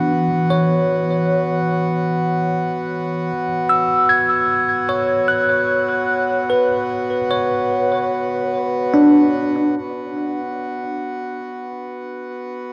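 Ambient and melancholic yet serene, this fragment of a longer piece sets a bright, clean tine electric piano, up front and coloured by phaser, tape echo and shimmer reverb, playing bell-like arpeggios over a reedy, breathing pedal harmonium drone in a cathedral-sized wash of reverb, until the piano stops at 9.8 seconds and the harmonium carries on alone to 12.7 seconds.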